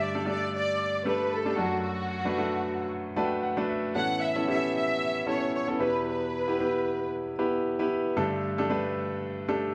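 Gently swung sixteenths in 4/4 carry this uplifting pop excerpt, where a lush, bowed studio violin section sings the melody up front with smooth vibrato, shaded by plate reverb and digital delay, until 7.1 seconds, while a bright, brilliant grand piano accompanies through Gsus2, D/F#, Aadd9 and Em, adds a fill at 2.9 seconds, and continues to the end, the whole excerpt sitting in a moderate large-room reverb.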